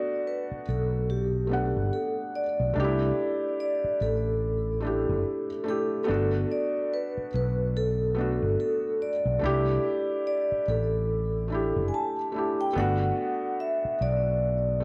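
Swung sixteenths at 72 BPM carry this mellow, dreamy lo-fi hip hop passage in G major, where a close-miked vibraphone with soft mallets sings the melody in a ringing, metallic voice with medium motor vibrato over a felt-muted upright piano that sounds soft and intimate, with audible action noise and a cassette tape colour, while a dark, round, punchy fretless electric bass enters at 0.5 s, the trio heard through a moderate recital hall reverb on a dry, gritty hardware recording as Gmaj9 alternates with a rootless C69.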